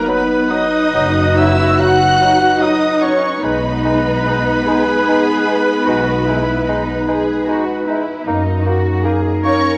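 Classical orchestral music, tender and serene, moves at a slow, rubato 46-52 BPM in 12/8 across chords of B, G#m/B and D#m/F#, with a lush studio violin section singing the high melody in expressive vibrato. Beneath it, a pure flute with lifted highs, a focused symphonic violin section, a distant oboe and a very quiet, clear clarinet shape second lines, while a smooth viola section and a warm bassoon accompany and a tight French horn section holds sustained chords, punctuated by stabs from a mellow, roomy trumpet. The woody, dark cello section enters at 1.0 seconds, after the even double bass section at 0.9 seconds, to anchor the bass, all set in a concert-hall reverb and colored by worn, warbling cassette tape pitch drift.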